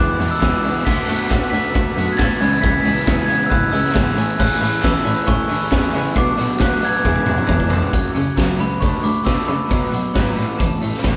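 A ringing, bell-like glockenspiel struck with hard plastic mallets carries the melody and takes a solo from 7.9 seconds in this upbeat, wistful indie rock excerpt heard live through a club PA, over an overdriven garage guitar with chorus and slapback echo, a twangy twelve-string electric guitar riff, an airy bowed cello bass, a gritty, punchy drum kit that rolls a fill just before the solo, and very quiet crisp handclaps.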